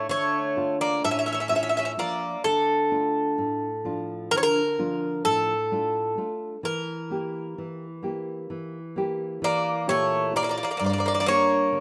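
Greek folk in a melancholic mood at 129 BPM in a straight 9/8, this excerpt from a longer piece sits in D harmonic minor and moves from Dm to Edim to Gm: a bright, metallic lead bouzouki carries the melody up front throughout, a softer second bouzouki adds a lower line only from 0.0 to 2.4 seconds and again from 9.4 seconds, and a dark, fingerpicked nylon-string guitar accompanies underneath, all set in a lush hall reverb within a rough home-demo mix.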